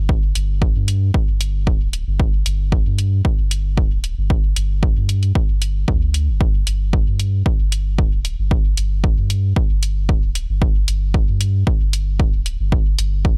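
Cavernous and meditative, this dub techno excerpt, cut from a longer piece, rests on a deep, round sub bass of soft triangle and square tones, its fast attack and sustained notes thickened by tube saturation and pumped by sidechain compression. A punchy analog kick drum enters at 0.1 seconds and a tape-warm electronic hi-hat at 0.4 seconds, both sitting up front with the bass. The sound is dry and gritty, with little reverb, like a hardware recording.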